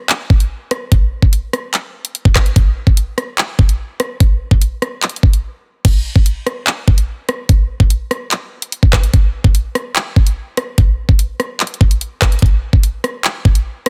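An overdriven electronic drill drum kit sits up front through this menacing, cold hip hop fragment at 146 BPM in a half-time feel, its knocking kick, bright hi-hats, handclaps, rim clicks and crash cymbal filling the whole track. A brief break at 5.4 seconds sets up a new section from 5.8 seconds. The sound is dry, dense and heavily limited in a modern master.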